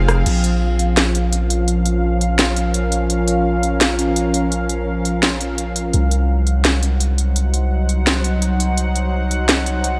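Half-time drum and bass in Bb minor at 169 BPM with a swung sixteenth feel, this heavy, tense excerpt pairs a bright, detuned sawtooth drone of string-like sustained chords, carrying vibrato, ring modulation, built-in reverb and a filter sweep from 0.3 seconds, with a deep sine 808-style bass and an up-front electronic kit of cracking snare, crisp hats, rim clicks and crash cymbal, moving from Bbm to Cdim at 5.9 seconds.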